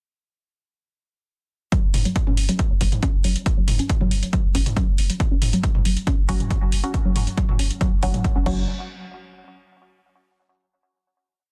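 A woody, wave-folded pluck riff cycles a 7-step loop that drifts against the bar through a filter sweep, lush chorus and digital delay in this relentless, intense peak-time techno piece at 138 BPM, driven by a punchy four-on-the-floor electronic kick, a techno kit of metallic hats, toms and crash, and a thick, saturated sub bass rumbling between the kicks, while muted, detuned dub chord stabs echo sparsely through a phaser from 6.3 seconds until a final hit at 8.7 seconds, in a dense, heavily limited, dry mix.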